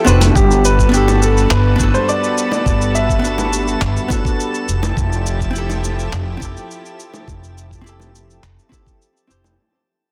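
A dark, clean hollow-body jazz guitar with digital delay and a thick, detuned unison pad with chorus open this smooth sunset chillout excerpt, joined at once by a woody, growly upright bass up front, a gritty, tape-toned sampler-style kit of cabasa, handclaps and hi-hat, and round, low-tuned bongos in the distance. From 0.4 seconds a knocking electronic kick enters and a clear, open baby grand piano carries the melody until 4.1 seconds, its long sustain roughened by vintage 12-bit grit and delay, while a calm, glassy harmonics texture drifts in the background. The harmony moves from Gmaj9 to Fmaj9 under light reverb and a dense modern master as the whole passage fades out.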